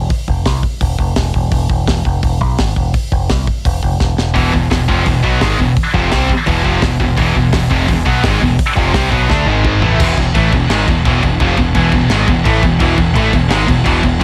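Growling overdriven bass and an up-front studio drum kit with a punchy kick open this epic, relentless heavy metal excerpt at 170 BPM in E. They are joined at 4.3 seconds by a bright, up-front high-gain guitar riff alongside a scooped distorted guitar, before a drum fill leads at 10.0 seconds into a half-time section where a crunchy, double-tracked overdriven guitar enters in the background beneath a dense, heavily limited master with light reverb.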